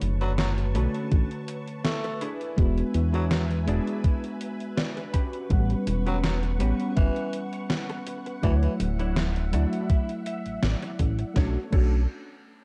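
A lightly swung 82 BPM groove in 4/4 drives this melancholic, nostalgic vaporwave excerpt in B minor, built on a thumpy, up-front electronic kick (entering at 1.1 s), a gated 80s drum machine with crash, hi-hat and a gated-reverb snare, and a glossy, pulse-width-modulated synth bass, all colored by cassette-tape darkness and light digital ambience. A round, full-bodied FM electric piano with chorus and delay carries the chords, while a silky string machine sustains softly behind and a bright, picked semi-hollow guitar riff adds 12-bit sampler grit, with clean electric guitar fills at 4.4 s and 9.2 s. A raspy, growling tenor saxophone sings a low jazz-style melody with vibrato and tape echo until 8.7 s, over a progression moving from Bm9 through E7, A13 and Dmaj9 before returning to Bm9 as a brief new section begins.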